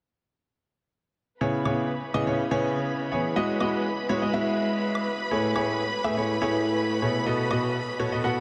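A dreamy, reverb-soaked mix opens this energetic, soulful piano house excerpt at 123 BPM in C# minor, tuned to A4 = 439 Hz. From 1.4 seconds, an up-front grand piano plays a smooth riff roughened by vintage 12-bit sampler grit and a diffuse ambient delay, alongside lush bowed strings with vibrato, muted by a low-pass filter, holding sustained chords through C#m7, Emaj9, Amaj7 and B7. A very quiet, overdriven analog woodblock adds electronic percussion from 1.7 to 7.6 seconds.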